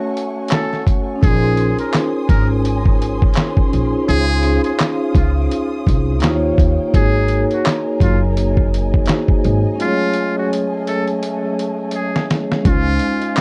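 This cosy, mellow lo-fi hip hop excerpt opens with a soft-mallet vibraphone, ringing and metallic with a slow motor vibrato and a cassette-tape colour, above a lush bowed string section that holds sustained chords with vibrato and portamento further back in the mix. A dusty sampler-style drum kit follows almost at once: gritty and overdriven, with a thumpy kick, a medium-tuned snare, hi-hat and handclaps sitting up front at 84 BPM in 4/4 with a swung sixteenth feel. A muted trumpet carries the melody from 0.5 seconds in a thin, buzzy, breathy jazz line with light vibrato and analog delay, and a woody pizzicato upright bass joins at 1.2 seconds. The harmony moves through extended chords in D-flat major, from Gbmadd9 through Bbm11, Dbmaj9 and Eb9, and a drum fill runs from 9.8 seconds. The dry, dark production gives the whole piece a close, intimate sound.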